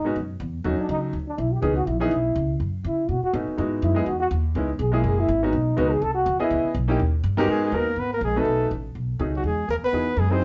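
A breathy, whispered trombone takes a solo from the opening moment, its dark tone carrying a light vibrato and a soft attack as it sits distant and roomy in this smoky, late-night swing and bop fragment. Beneath it, a clear grand piano comps up front with an intimate, natural sound, and the action noise of the instrument can be heard. An upright bass anchors the group with a woody, pizzicato tone on steel strings, placed close to the listener. At 7.4 seconds a mellow flugelhorn enters with the melody, close-miked with vibrato and touched by plate reverb, as the harmony moves through richer chords such as G#m11 and B13 toward a closing Emaj7. The small group sounds as though heard from further back in a modest studio room, with a soft, rounded top end that suits the after-hours mood of this brief cut from a longer piece.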